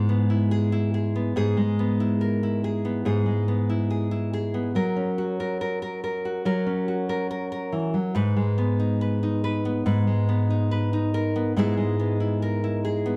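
A wistful, melancholic folk piece moves at a slow 70 BPM in a straight 4/4, heard here as an excerpt cut from a longer work. A lone nylon-string guitar carries everything from start to finish, fingerpicked in a classical manner and spanning G#2 to B4. Its acoustic tone is warm and sits up front, bathed in a wet, large studio reverb with a 1.2 s decay that lends a sense of space. The harmony travels from E/G# to F# at 4.8 seconds, then to G#m at 8.2 seconds, before settling back on E/G# near the close. The result is an intimate, reflective passage with a gently aching quality.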